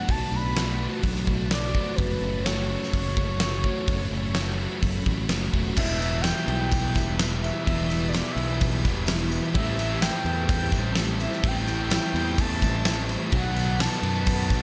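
Shoegaze-leaning dream pop rock with a dreamy, melancholic mood, this 14.6-second excerpt drifts along in a straight 4/4 pulse. A breathy, flute-like synth lead carries the melody with a soft, sustained tone treated with chorus, phaser, slapback echo and vibrato, while a very quiet vintage string machine voiced as cellos holds full-bodied chords underneath. Two guitars sit in the background from the start: a dark, thick fuzz guitar with analog chorus and a slightly broken-up guitar through a small old amp, its riff trailed by reverse reverb. A warm, punchy fingered bass plays alongside a huge arena drum kit with a fat snare, crash, hi-hat and kick that sits up front in a big-room sound. At 5.8 seconds the music moves from its opening Bm7 to F#m passage into a second section built on Em, Am7 and B7, where a bright, double-tracked overdriven guitar adds a biting riff and a jingly, band-limited tambourine joins at 6.0 seconds. 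A small room ambience wraps the whole mix.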